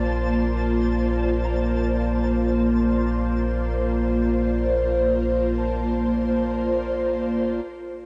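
Ambient piece in Bb major at 58 BPM, warm and luminous, where an ethereal, airy pad with ensemble chorus and phaser holds sustained chords up front over a deep, round sub bass, while an evolving analog drone with chorus, fingerpicked concert harp arpeggios through analog delay, and a twinkling granular texture with octave-up shimmer sit in the background, the harp and texture fading out over the first 7.7 seconds within a plate-reverb, echo-heavy cassette-tape mix.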